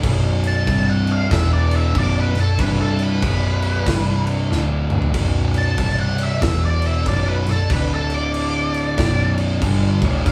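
A small, live room sound with moderate reverb frames this ominous, hypnotic stoner-doom excerpt in B minor at 94 BPM with a swung feel, where a double-tracked, compressed fuzz guitar riff sits up front over a round, dark hollow-body bass with overdrive and a boomy acoustic kit with bright cymbals, while an octave-fuzz lead guitar with wah solos from 0.5 seconds and the drums break into a fill at 4.5 seconds over power chords settling on B minor.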